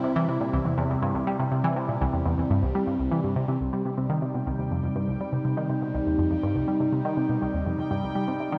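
A phased analog pad and a tight sequenced synth riff open together, setting up a cosmic, hypnotic piece of ambient, sequencer-driven space music at 122 BPM in a straight 4/4. The pad holds sustained chords that sound swirling and full-bodied, treated with phaser and chorus, while the riff below it is nasal and driving, its detuned sawtooth and pulse tones given a filter pluck, chorus and delay. Both sit up front in the mix. The harmony rests on C before turning to C minor at 3.6 s, where a bubbling stepped-filter texture fades in high on G5, resonant and soft-edged with random filter steps, chorus and its own reverb. A wet spring reverb and heavy echo give the whole mix a spacious, drifting character, and the recording is cut from a longer piece.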